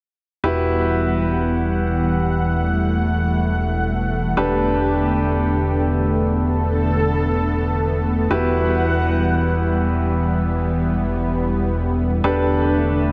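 A clear, boxy baby grand piano plays delayed stabs over a lush, warbling unison pad with chorus and a fat, saturated analog bass holding a low E, giving this emotional, dreamy house excerpt in free time and E minor a vintage glow as it drifts between Emadd9 and Gadd9/E chords from 0.4 to 13.1 seconds in a spacious hall reverb.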